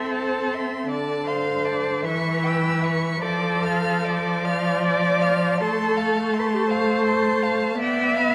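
Classical slow romantic movement for string quartet, tender and lyrical, moving in a rubato 6/8 at about 48-56 BPM with tuning at A4 = 438 Hz, in a brief passage cut from a longer piece. A distant, smooth first violin sings the high melody over an even second violin line, while a focused viola sits up front with the accompaniment and a cello, also up front, carries the bass with soft attacks, expressive portamento and a warm tone, all four bowed with vibrato. A wet recital hall reverb of about 1.7 s surrounds the players as the harmony moves from Am/C through Dm7 and C#dim/E toward a closing G7/B at 7.8 s.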